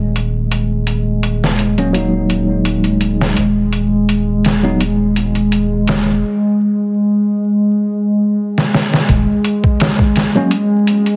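A warbling, detuned tape-like pad anchors this melancholic, hypnotic trip hop fragment, holding sustained chords with a slow attack, chorus and its own reverb, plus a grainy 12-bit sampler grit that gives it a nostalgic, lo-fi cast. Beneath it, a deep, round dub sub bass with tube saturation sits up front until 9.3 seconds. A pitched-down sampler-style drum kit of thumpy kick, medium-tuned snare and hi-hat hits with an overdriven, gritty punch, its filtered tones darkened and its groove gently swung, and a drum fill from 8.6 seconds leads into a new section. A worn, slightly out-of-tune tine electric piano adds mellow accompaniment with harmonic tremolo and tape echo, appearing briefly in the opening seconds and again for a moment near the close. The whole mix is bathed in lush hall reverb and squeezed into a heavily compressed radio sound with vinyl crackle on top.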